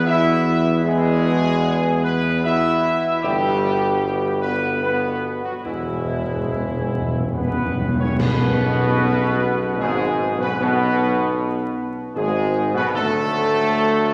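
Classical ceremonial fanfare in a regal, majestic 3/4 at 75 BPM, where a punchy, tight trumpet section with light vibrato carries the melody over mellow, soft-attack French horn chords, a background trombone section and an up-front tuba bass, all distant in a wet church reverb with vinyl crackle, while round soft-mallet timpani enter with a fill at 5.6 seconds and dark clash cymbals with concert bass drum join a band accent at 8.2 seconds as the harmony turns from E and G toward G#m and D in this excerpt cut from a longer piece.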